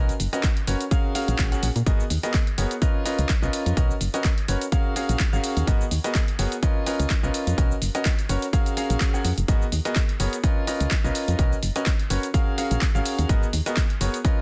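Soulful and energetic, this piano house cut moves at 126 BPM in 4/4 with a 55% swing on the sixteenths, set in G# dorian and cut from a longer piece. A clear concert grand piano carries the riff up front from 0.0 s, its intimate tone showing audible action noise and long sustain, roughened by vintage 12-bit sampler grit, dub echo and sidechain pumping. Beneath it, a solid FM bass sits round and dark with a fast attack, also pumping against the beat. An electronic kick drum, layered and punchy, enters at 0.4 s and sits up front, while a punchy analog drum machine adds overdriven handclaps, hi-hat and shaker that sound re-recorded in a large room. The chords cycle through Bmaj9, F#maj9, G#m9 and C#13, and the whole track carries little reverb under a dense, heavily limited modern master.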